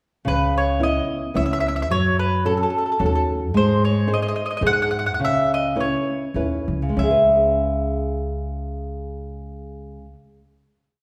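In a lilting 3/4 with a light swing on the eighths, this brief Italian folk serenade in C# minor moves at 96-111 BPM and slows from 3.5 to 7.0 seconds before settling on a final chord. Up front, a round, double-strung picked mandolin sings passionate, romantic song phrases built from short motifs. Also up front, a small fingerpicked nylon-string guitar, with an audible finger squeak, plays an oompah of bass notes and chords, while a dark, woody, thumpy pizzicato upright bass marks root and fifth on the main beats, all bathed in the wet reverb of a recital hall.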